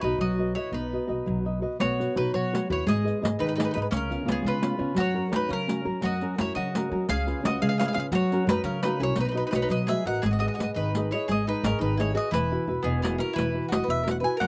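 A dark, fingerpicked nylon-string guitar sits up front in this lively, sunny Italian serenade, laying down classical-style accompaniment in B major at 114 BPM in a straight 6/8. Two bowl-back mandolins, picked on double strings, carry the tune: one sings a bright melody above while the other plays a lower second line beneath it. An upright bass adds a woody, pizzicato foundation from its steel strings, and at 1.8 s a close riq joins with bright jingles as the passage moves from its opening section into a middle one. The harmony wanders through chords such as Bsus2, G#m, C#7 and F#, returning to the opening material at 10.2 s and closing on Esus2. Recorded outdoors with little reverb, this short cut from a longer piece has a sun-drenched feel.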